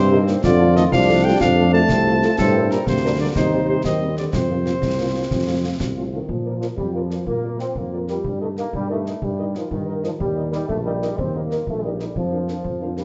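The cornet's mellow, vibrato-tinged melody opens this spirited, proud military-style wind band march together with a dark, close-miked euphonium second line, sustained chords from a distant trombone section and an up-front tuba bass with a smooth top and light vibrato. The music moves in a straight 6/8 lilt. A soft-attacked French horn section fills in accompaniment from the background, and a concert snare drum, concert bass drum and clash cymbals sound close and dry, with darkish cymbals. The euphonium drops out at 6.1 s, just before the second section begins at 6.3 s on a Bb chord and moves through Eb harmonies. The cornet, trombones and horns sit in a roomy recital hall reverb, giving the brass a classical polish with a softened top end, and the passage is cut from a longer piece.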